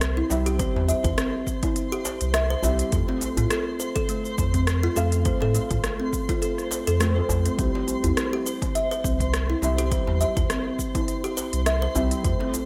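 Earthy and warm, this short cut from a longer organic downtempo piece rides a relaxed, lightly swung groove. Up front, a woody, hollow-sounding kalimba plays bright, short arpeggios through tape echo, while a deep, round sine sub bass pumps with the sidechain. A felt-muted upright piano supplies dark, boxy accompaniment, its action noise audible beneath vintage 12-bit sampler grit, sidechain pumping and tape echo. The drums pair a punchy, layered, overdriven electronic kick, which enters at 0.6 seconds, with an overdriven electronic kit of crisp hi-hats, rim clicks and shaker re-recorded in a large room, and a medium-tuned acoustic djembe sits in the background. A twinkling granular FM texture adds a sparkling octave-up shimmer in its own reverb, while the harmony moves from C to F at 2.9 seconds and back to C at 7.6 seconds, with the mix set in light digital ambience.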